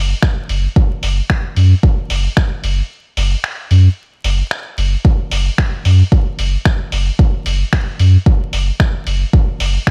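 Nocturnal and hypnotic, this dub techno excerpt moves at 112 BPM in a straight 4/4, built on a smooth, dark sine sub bass that pumps from the sidechain and sits up front. An overdriven, deep electronic kick with studio reverb drives the groove but drops out from 2.9 to 5.0 seconds, while a muffled, pitched-down sampler-style kit adds quieter finger snaps and hi-hat. Vinyl crackle gives the dry mix a dusty grain.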